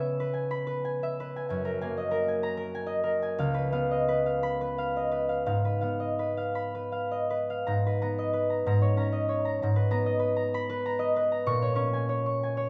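Wistful and gentle, this short classical excerpt features a solo concert harp in G# dorian, moving in 6/8 at roughly 53-65 BPM counted in dotted quarters, with a flexible rubato feel. The harp is fingerpicked and sits up front, its acoustic tone ringing across a span from C#2 to C#6. A generous recital hall reverb with a 1.6 s decay surrounds the instrument, lending the notes a soft, lingering halo. The harmony drifts through colorful extended chords, opening on C#m7 and later settling around G#madd9 and A#m7/G#. A phrase of about 7.6 seconds is followed by a return of the same material, and the recording ends at 12.7 seconds, cut from a longer piece.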